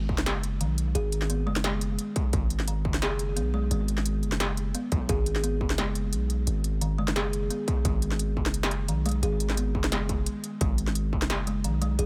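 Half-time drum and bass at 174 BPM in G# minor, this heavy, dark excerpt pairs a deep, sine-like 808-style bass with a fast attack and long decay against a distorted electronic kick and an up-front industrial kit of clanging snare and smooth hats. A woody, close-miked kalimba plays short thumbnail-plucked arpeggios through dub echo over a single G#m chord, set in a digital ambience. A very quiet electronic swell marks a brief break at 10.3 seconds, and the kick stops at 11.2 seconds while the bass, kit and kalimba carry on.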